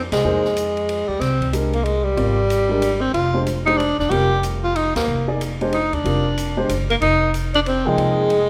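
A brisk, lightly swung 3/4 at 186 BPM carries this modal jazz fragment in F dorian, with the band striking accents together at 0.1 and 4.9 seconds. Underneath, a pizzicato upright bass with gut strings sits up front, thumpy and woody, while an acoustic kit with a boomy kick, a high-tuned snare and dark cymbals plays hi-hat, ride, snare and kick softly in a natural studio room. A breathy tenor saxophone leads in a clear, present subtone with light vibrato. An intimate upright piano fills in the harmony with a boxy tone, long sustain and audible action noise. At 6.9 seconds a very quiet, mellow alto saxophone adds a second line with scooped notes and a smooth top. The harmony moves from Fm to Gm and back to Fm7, and a moderate concert hall reverb gives the spiritual, searching mood an open glow.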